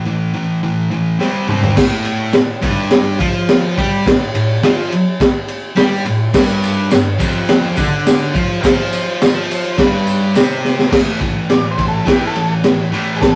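A straight 4/4 pulse at 105 BPM drives this menacing, swaggering garage rock excerpt, cut from a longer piece and heard in a rough rehearsal-room recording with a moderate studio reverb and saturated grit. A thick fuzz guitar opens alone with a bright, double-tracked, picked riff that sits up front, and the crunchy breakbeat drum kit enters at 1.2 seconds with a fill, its punchy kick, high-tuned snare, toms and dark crash and ride cymbals sounding gritty with a rolled-off top. From 6.3 to 10.7 seconds a jingly, band-limited tambourine shimmers in the background, and the drums throw in another fill at 10.6 seconds. The chords move from A5 and C5 to Fadd9/G and G5, then back to A5 at 10.9 seconds, and an overdriven transistor combo organ enters at 11.5 seconds with a buzzy solo full of heavy vibrato. The guitar and kit carry on to the cut at 13.4 seconds, keeping the vintage, menacing swagger to the end.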